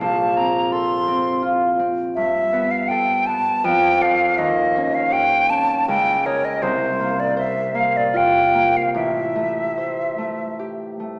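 Heard from further back in a recital hall, the recording has a wet reverb with a 1.6-second decay and a small-speaker quality that adds to its hazy, wistful air. This short passage of impressionist classical music for flute and harp is cut from a longer piece. It moves in a rubato 3/4 at roughly 72 to 86 BPM. The silver concert flute carries the melody between C5 and C6, its metallic, airy tone sitting up front with a crisp attack, vibrato and lifted highs. The concert harp accompanies from A1 up to D#5, fingerpicked and ringing, bright and also close in the mix, and it sounds for a moment after the flute stops at 10.6 seconds. Extended chords such as Bbmaj9, G9, F69 and Eb9 drift through C#sus2 and C7sus4 before settling on Am7 at 8.9 seconds.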